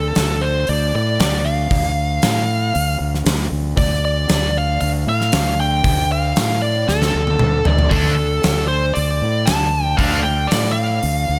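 Driving and aggressive, this hard rock passage, cut from a longer piece, sets a dark, distorted high-gain lead guitar melody up front over a growly, overdriven fuzz bass and a punchy gated 80s drum kit with a fat snare and a polished, airy room sound. After a drum fill ending at 7.9 seconds, two bright distorted rhythm guitars, one of them scooped, join in the background with a riff until 10.2 seconds. A lush hall reverb gives the whole mix a big arena feel, all resting on a single D minor chord.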